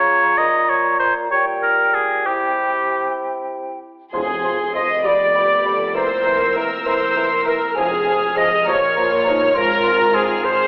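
In a rubato 6/8 pulsing at 66 dotted-quarter beats per minute, this brief cut from a quick, dramatic and restless classical-period symphonic movement in F minor opens with woodwinds alone: an airy, hollow flute, a clarinet in the background, an up-front oboe that stops at 3.2 seconds, and a close-miked, mellow bassoon underneath. At 4.1 seconds the full orchestra arrives, with a dark, vibrato-rich violin section carrying the melody over softly bowed second violins, a woody cello section and double basses. Soft-edged French horns sustain chords, clear trumpets stab up front, timpani strike in the background, and violas join at 5.0 seconds, all in a hall reverb heard through a narrow, telephone-like sound.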